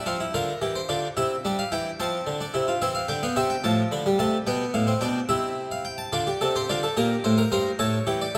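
A moderate concert-hall reverb surrounds a close-miked, brilliant Italian-style harpsichord with octave strings, heard up front and alone in this contemplative, solemn 8.4-second passage from a longer baroque-style three-part fugue in 6/8, where the plucked lines span G2 to B5 and a new section at 6.1 s turns from Bb/D, C and F harmonies toward Dm, Gm and A.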